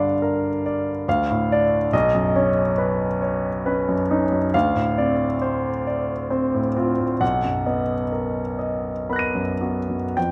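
Luminous and serene, this brief excerpt of impressionist classical solo piano drifts in a rubato triple metre on a clear concert grand, captured up close and intimate with audible action noise, deep bass and long sustain across a span from B1 to D#7, moving through chords such as Gm7, Badd9 and Bmaj7 inside a moderate recital hall reverb.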